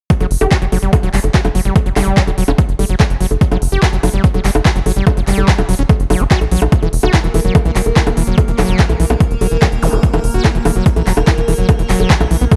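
A punchy, overdriven electronic kick drum, a big-room dance kit of bongos, handclaps and crisp hi-hats, and a squelchy, gritty acid bass riff with distortion, sidechain pumping and delay open this alien, psychedelic trance excerpt at 145 BPM in a straight 4/4, joined by a tight, driving sequencer bass up front; an evolving, morphing wavetable pad with phaser and its own reverb enters softly in the background at 7.2 seconds, while a zap and reverse cymbal flicker faintly near 9.8 and 12.5 seconds in an otherwise dry mix.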